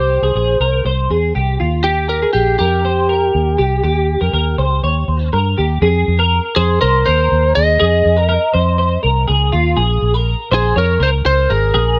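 Bittersweet and restless, this jangly indie pop piece in F minor moves at 121 BPM in a straight 4/4 and is cut from a longer piece. A bright twelve-string electric guitar plays clean, picked arpeggios throughout, its twangy, compressed tone given an ensemble chorus. Alongside it, a lightly driven lead guitar carries the melody between G4 and Eb5 with a slightly broken-up edge. Underneath, a vintage fingered electric bass sits up front with a dark, round, foam-muted sound. The harmony moves from C through Eb6 into a new passage at 5.8 seconds that settles on Fm7 and then Bbm, all wrapped in a light reverb.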